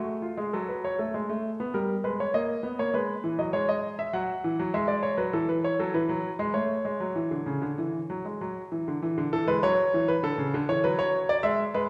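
A clear, intimate grand piano with audible action noise plays a lively, joyful baroque-style two-part invention alone in a straight four-beat metre, its natural tone sitting up front while a wet recital-hall reverb places the listener further back in the room, in this short passage cut from a longer classical piece.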